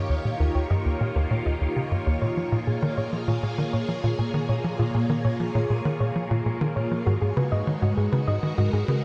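A dark, warm production set in a long shimmering reverb opens this short cut from a longer piece of ambient, sequencer-driven space music, moving at 99 BPM in a straight 4/4 with a hypnotic, expansive mood. Up front, a tight sequencer bass drives a punchy riff with a saturated, wave-folded edge, a filter pluck and a moving notch, while a filter sweep runs across its part under subtle chorus and analog delay. A phased string machine holds sustained chords with a slow attack and long release, its bright, vintage tone swirling through ensemble chorus and phaser. A soft, round pluck fades in with gentle, dusky arpeggios in a middle register, colored by a sub octave, chorus and analog delay. The harmony moves from D#7 at the start to A#m7 at 2.2 seconds and settles on G#m7 at 7.1 seconds.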